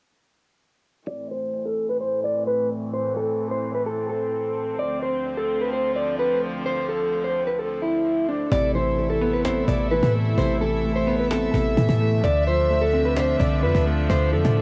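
A slightly broken-up, fingered electric guitar leads this dark, menacing half-time trap excerpt, its up-front melody shaded by subtle chorus, tape echo and cassette grit over smooth, reedy bowed strings with a gut-string, period tone, while a filter sweep runs through the opening until 8.5 seconds. At 8.5 seconds a mellow, intimate vintage grand piano with audible action noise, a deep, boomy sine 808 bass with a noise layer and a snappy, compressed cajon with snares enter alongside the guitar. The chords move from Am to Dm7 and later Amadd9 in a home-cassette sound with light reverb.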